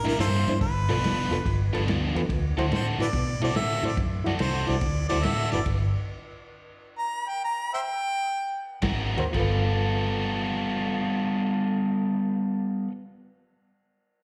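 Gritty and rollicking, this electric blues shuffle in G mixolydian swings along at 114-142 BPM as a clear, up-front harmonica with light vibrato, scooped notes and tongue slaps carries the jazz-style melody through slapback and tape echo, over a biting overdriven guitar riff, a reedy electric piano shimmering with fast tremolo through a combo amp, a round, foam-muted vintage bass and a muffled, lo-fi soul drum kit with dark cymbals; the band stops at 5.7 seconds while the tempo slows and the harmonica carries on alone, then the guitar, bass and drums return at 8.8 seconds on an Ab9 chord, all heard from a live gig through the venue's PA with small-room ambience and recital hall reverb.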